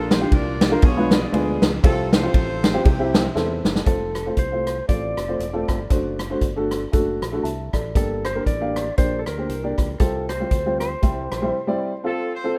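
A clear, distant horn section with vibrato opens this hopeful, jubilant uptempo gospel excerpt in F major at 118 BPM, alongside a woody, boxy upright piano and a growly fingered electric bass, quickly joined by a punchy, up-front swinging big-band drum kit of hi-hat, kick, ride, rim click and snare; a twangy, compressed lap steel guitar takes over the melody at 3.9 seconds with slide, volume swells and tape echo, and after a break at 11.5 seconds the horns return briefly on the closing F chord, all in a dry, rough home-demo mix.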